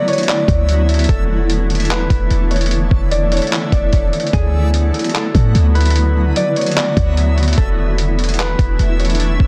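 A clean, deep 808-style bass sits up front from 0.5 s, its sine tone boomy and dark with a fast attack that decays after each hit, anchoring this blissful, floating stretch of atmospheric cloud-rap. It is cut from a longer piece and moves at 148 BPM in 4/4 with a half-time feel. A lo-fi sampler-style drum kit of handclaps, hi-hat and a thumpy kick sounds muffled, compressed and pitched down, pressed close to the listener. Above them, a Celtic harp plays a brilliant, ringing, thumb-plucked melody through a delay, while a granular cloud pad holds blurred, detuned chords with slow attacks, built-in reverb and a sidechain pumping effect. A reversed, dreamy granular texture swells softly in the background with its own reverb, and a barely audible electronic downlifter and riser mark the opening and the final moments near 9.2 s. The harmony alternates between D69 and E7sus4, and the overall sound is dry in the room but dense and heavily limited in a modern master.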